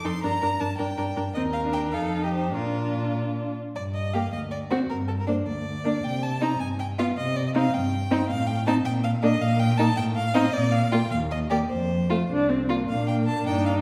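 Quick, lively and graceful classical-period string quartet movement in a rubato 6/8 at around 98-109 BPM, moving from Bb major into G minor at 3.8 s and back to Bb major at 8.3 s, with a clear, focused first violin carrying the melody over a second violin's soft-edged second line, a dark viola's expressive accompaniment with gliding portamento, and an up-front cello bass with a smooth top, all four bowed with vibrato and heard from further back in a recital hall's lingering reverb.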